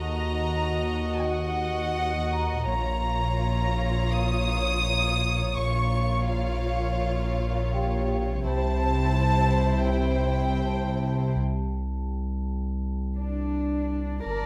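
An ominous, mysterious cinematic suspense cue at 83 BPM opens with a deep, saturated sub bass drone up front beneath soft-attack, sul tasto bowed strings (a rich violin section carrying the melody, a smooth-topped second violin line, and dark cello and very quiet double bass sections) while a metallic vibraphone rings in the background and the chords move from Ebm to Bbm to C in moderate hall reverb, until the melody violins fall silent at 11.4 s and the remaining parts carry on toward 14.5 s.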